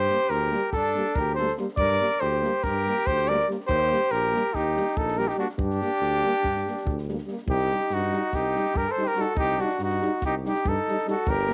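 A driving 9/8 pulse runs at 284 eighth-note beats per minute with a straight feel, giving this fiery, virtuosic Balkan brass band excerpt its headlong momentum over a Gm to Eb progression that turns to Cm at 7.5 s. A warm, close-miked cornet carries the melody up front in a classical style, while a mellow trumpet with light vibrato plays a quieter second line, colored by cassette tape and plate reverb. Beneath them, a tuba with vibrato anchors the bass in the low register, and a dark euphonium and a soft-attack French horn fill in the accompaniment, the horn sitting in the background and both carrying a cassette tape tint. A compact acoustic cocktail kit with a punchy kick and high-tuned snare keeps the dance moving from a small room, also through cassette tape. The whole band plays from the opening moments to the end at 11.5 s, framed by moderate studio reverb and the intimate character of a home cassette recording.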